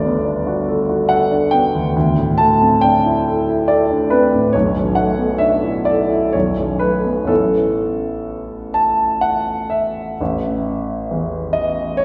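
Luminous and hazy, this brief fragment of impressionist classical music unfolds in a gently flexing rubato in three-four time. A solo grand piano carries everything, its warm, smooth and slightly vintage tone set up front and spanning from G1 to A5. Rich extended harmonies drift by, moving from Gmaj9 through D9sus4 and Bm7 to Bsus2 and Aadd9. At 10.2 s the music turns to a new passage, settling onto a bare A5 sonority until the close at 12.0 s. A wet recital-hall reverb, with the resonance of a church or concert hall, wraps the instrument in a soft glow.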